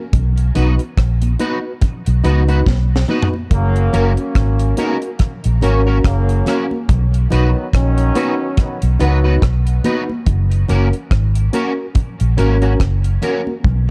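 Roots reggae at a laid-back 71 BPM in F# major, sunny and unhurried, with a swung sixteenth feel over a chord movement between B and F#. A round, foam-muted electric bass and a dry drum kit with a high-tuned snare and tight kick sit up front, while bright, damped congas stay in the background, a twangy, slightly broken-up electric guitar with ensemble chorus and dub echo fills in the accompaniment, and a reedy, lightly overdriven electric piano with fast tremolo plays stabs. A bright trombone section with light vibrato and dub echo carries a second line from 3.5 to 9.3 seconds, drum fills mark 2.7 and 13.6 seconds, and the whole cut sits in a small, dark room sound.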